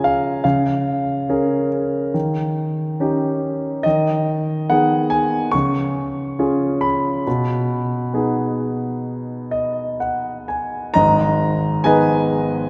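A clear grand piano carries this short, lyrical classical solo, sitting up front with an intimate, natural tone in which the noise of its action can be heard. The mood is peaceful and warm, moving in 4/4 at around 60-72 BPM with a free, rubato feel in B lydian, and the playing spans from G#1 up to C#6. The harmony drifts through A#m7/C#, D#7, G#m/D#, C# and B6 before the piano plays a fill from 9.0 to 11.0 seconds. At 11.0 seconds a new section begins on G#m, and the passage, cut from a longer piece, breaks off at 12.7 seconds. A wet church reverb with a long 2.9-second decay surrounds the instrument, giving it the spacious sound of a church or concert hall.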